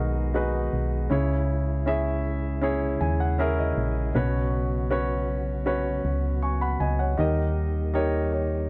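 Emotional and heartbroken, this short pop excerpt at 79 BPM sets a present, polished grand piano over a punchy, round FM bass, with a clear tonewheel organ holding sustained chords through a slow rotary speaker and a hint of key click, the piano adding fills at 2.6 and 8.0 seconds as the harmony moves from G#m7 through C#m and Bsus2 to D#, all under light reverb and a cassette-tape sound.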